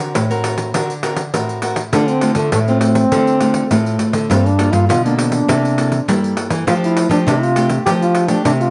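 Lightly reverberant with a softened top end, this lively, nostalgic samba-choro excerpt in D minor at 101 BPM opens at 0.0 seconds on an up-front, fingerpicked classical nylon-string guitar, joined at 0.2 seconds by a jingly pandeiro in a small room, before a mellow, breathy trombone takes a jazz-style solo with scooped notes at 1.9 seconds over a second fingerpicked nylon-string guitar on bass, whose fresh strings give off audible finger squeak as the harmony moves from D7b13 through Dm7, Gm9 and C13 to F69.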